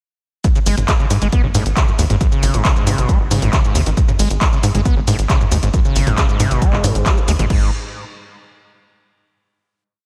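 Driving and intense, this short peak-time techno piece runs at 136 BPM in straight 4/4, in G# phrygian with a slightly low tuning, dropping in at 0.4 s with a punchy four-on-the-floor electronic kick and an analog drum machine of closed and open hats, shaker, claps, low toms and crash, both re-recorded in a large room. A tight, nasal sequencer bass gallops in sixteenths from 0.7 s with sidechain pumping, while a screaming, squelchy acid line rides on top with resonant filter sweeps, accents and slides, thickened by distortion, chorus, analog delay and its own pumping. Light reverb glues the mix, and the drop gives way to a final note from 7.5 s to 9.3 s.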